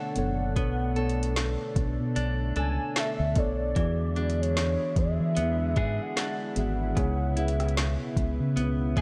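Bathed in light digital ambience, this moody, sensual contemporary R&B excerpt at 75 BPM in B dorian, with a swung 16th feel, sets a velvety, chorused synth lead melody over muted, felt-like synth keys, a lush unison pad holding chords in the background, and bright, clean guitar arpeggios recorded direct with spring reverb, while a round, punchy fingered bass and an electronic drum kit with soft kick, woody snare, metallic hats and vintage 12-bit sampler grit enter at 0.2 s beneath chords moving from Bm9 to E7 to C#m7.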